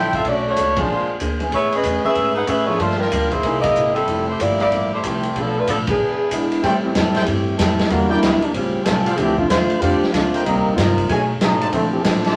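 A warm, vibrato-rich saxophone section carries the melody of this energetic, brassy big band swing excerpt at 188 BPM until 6.5 s. From 6.6 s a tight, smooth-topped trombone section takes a solo while a clear, close-miked trumpet section adds stabs. Underneath, a woody pizzicato upright bass, a distant, roomy drum kit with a boomy kick, a dark hollow-body archtop guitar and an intimate grand piano with audible action noise swing through jazzy extended chords, all set in wet studio reverb with a layer of vinyl crackle.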